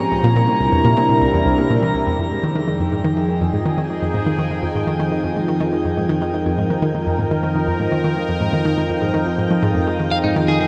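Mysterious and cosmic, this sequencer-driven space music moves at 123 BPM in straight 4/4 in F minor. A brief, airy flute line with tape echo opens over a C7 chord before the harmony settles on Fm7 at 2.2 seconds, while an evolving, detuned sawtooth pad with chorus sits up front and a round analog pluck riff with chorus and tape echo runs low beneath it. At 10.1 seconds a twangy electric guitar at the edge of break-up adds bright picked arpeggios, and a long shimmer reverb washes over the recording.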